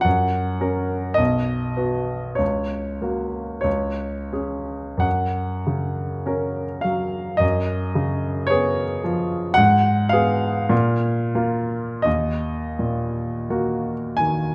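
A clear, natural grand piano opens the recording on an F# major chord, sitting up front and playing alone as a romantic nocturne in the classical tradition. The tempo is slow, drifting between 40 and 57 BPM in 4/4, and the rubato feel lets the phrases stretch and breathe with a nostalgic, dreamy mood. The harmony moves through B, F# and a C#7 over F# before turning to Eb minor at 9.6 s, where chords such as Abm and Ebm cast a more wistful shade. The piano spans a range from deep bass notes up into the upper middle register. A moderate recital hall reverb surrounds the instrument, and the overall production leans dark and warm, giving the sound an enveloping depth. This 14.5-second passage is cut from a longer piece.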